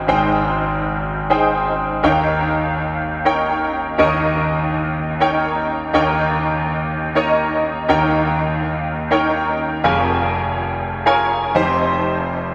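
At 123 BPM in 4/4 with a light swing on the sixteenths, this urgent, dramatic pop fragment is carried by a single concert grand piano, cut from a longer piece. The piano sounds clear and polished, with a deep bass, short sustain and an up-front presence, spanning F1 to Ab5 under an ensemble chorus and diffuse ambient delay, all set in a wet, dreamy plate reverb. Harmonies move from Abmaj7 to Eb7, then shift at 9.8 seconds to Bbm7/F and Cm/F.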